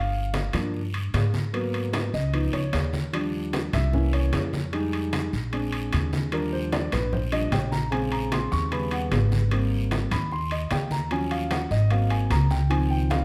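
A warm concert grand piano takes the lead up front over a growly, woody pizzicato upright bass, with bright damped congas, ringing metal-shell timbales and a raspy guiro driving this sunny, danceable Afro-Cuban jazz cut from a longer piece at 150 BPM in Eb major, moving to Ab major at 9.5 seconds through rich jazz chords in a large studio reverb.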